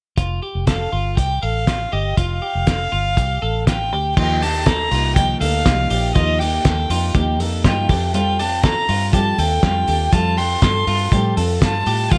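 A reedy, gut-string violin with light vibrato carries the melody up front from 0.7 seconds, floating over a bright, twangy twelve-string electric guitar playing arpeggios in this nostalgic, breezy stretch of jangly indie pop at 121 BPM in F mixolydian. Underneath, a round, foam-muted vintage electric bass and a cloth-damped, thuddy drum kit with a fat snare, dark cymbals and a gritty, lo-fi muffle sit close, while a dark fingerpicked steel-string acoustic guitar joins at 4.2 seconds as the harmony moves from Fadd9 to Ebadd9 and back. Light reverb gives the cut a small, intimate space.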